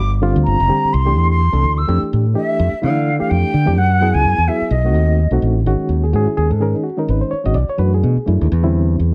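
Intense and funky, this short excerpt of electric jazz fusion at 127 BPM swings its sixteenths in 4/4 as an airy, vibrato-laden concert flute with slapback echo carries the melody until 5.4 s, over a fingered electric bass with an amped, up-front punch and a reedy, bright electric piano shimmering with fast tremolo, all in a light reverb, before the harmony settles into G# minor from 5.7 s.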